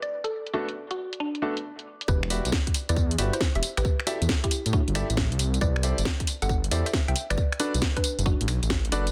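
A dark, rumbling detuned saw bass arrives with a tight electronic kick at 2.1 seconds to anchor this moody, soulful two-step UK garage cut in E minor at 136 BPM, where a woody, round mallet-like synth pluck carries the melody through chorus and dub echo, a clear concert grand piano adds low-pass-filtered stabs with dub echo, a swung garage kit of cracking snare, bright hats, finger snaps and tambourine sits up front under low-pass filters, and a silky, very quiet string machine holds a sustained chord only over the opening 2.1 seconds, set in a dense, heavily limited master with digital ambience.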